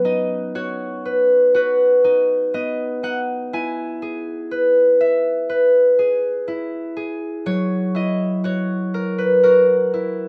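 A solo concert harp opens this tender, gentle lullaby, its warm, ringing strings sitting up front in a moderate studio reverb. Fingerpicked in B major at a slow 61 BPM in straight 4/4, it moves from B to E at 3.5 seconds and settles on F#7 at 7.5 seconds, spanning F#3 to G#5. This brief excerpt of children's music, cut from a longer piece, runs about 10.3 seconds.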